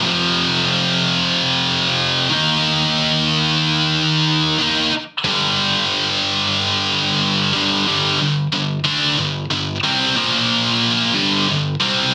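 A bright, scooped, double-tracked high-gain electric guitar sits up front from the very start of this powerful, energetic rock fragment at 92 BPM in straight 4/4, its picked, distorted power chords moving from F5 through Eb5 to G5 before a new section at 7.9 s moves to Bb5 and settles back on G5, all carried by the guitar's slapback echo in a moderate studio ambience with a heavily compressed, radio-style finish.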